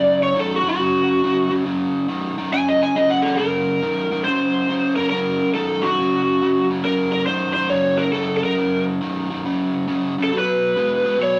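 Swaggering and laid-back, this swung blues at 139 BPM in F# major sets a picked lead guitar through a small cranked amp with overdrive, soloing from the start until 3.4 seconds and then carrying the melody, over a warm, overdriven electric guitar riff in the low register, while the harmony moves from F#5 to B5 at 10.3 seconds, both guitars up front in a rough rehearsal-room recording with moderate stone-room reverb, cut from a longer piece.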